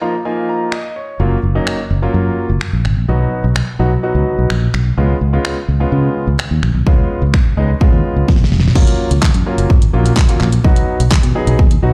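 A grand piano opens this euphoric, carefree dance-pop excerpt with an intimate fill, its audible action noise, deep low end and long sustain ringing over lush chords. A punchy electronic pop kit joins at 0.7 seconds with a fat snare, metallic hi-hats, handclaps, finger snaps and crash, and a round, amped fingered bass follows at 1.2 seconds with a sidechain pumping. A drum fill at 8.3 seconds leads into a fresh section, all heard as if played through a big sound system in a bare, reverberant room.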